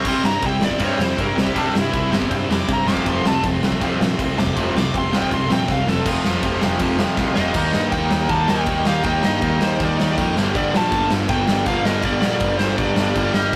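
A punchy, up-front rock drum kit in a bright stone room drives this urgent, aggressive punk rock fragment, where a smooth overdriven lead guitar solos for the first 6.1 seconds over background riffs from a cranked stack guitar, a double-tracked overdriven guitar and a very quiet compressed distorted guitar, all anchored by a growly fuzz bass, with drum fills at 5.7 and 7.2 seconds in a rough, tube-saturated rehearsal-room sound with light reverb.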